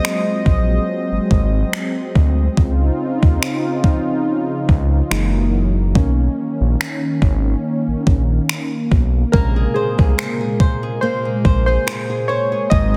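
A lightly swung 4/4 groove at 71 BPM drives this moody, late-night contemporary R&B excerpt in Bb minor, built on a crisp 8-bit drum machine whose thumpy, overdriven kick and finger snaps sit up front with a sampler-style, room-recorded grit, and a softly clipped snare. From 0.5 seconds a round analog bass joins, deep and mellow with a fast attack and sustained, evolving tone, also placed prominently in the mix. Throughout, detuned analog keys carry the accompaniment and take a solo role, their square and sawtooth voices shaped by a filter sweep and chorus, while a smooth, detuned pad holds sustained chords beneath with a soft attack and long release. The harmony moves through lush extended chords, Ab13, Dbmaj9, Gb13 and Bmaj9, before settling on Bbm9 at 9.3 seconds, where a dark, boxy fingerpicked flamenco guitar enters with tape-echoed arpeggios low in the balance. Light reverb surrounds a dense, heavily limited modern master.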